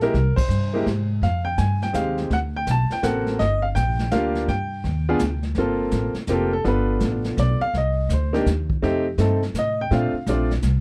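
Dry, this cut from a longer piece is a swinging, smoky jazz piano trio in 3/4 at 166 BPM, where an intimate, clear baby grand with audible action noise carries the melody over a woody, up-front pizzicato upright bass and a distant, roomy brush kit with dark cymbals and a boomy kick, the band hitting an accent at 0.3 seconds before the piano takes a solo from 5.6 seconds as the chords move through Gm11, G7, Cm and F7 to Bbmaj7.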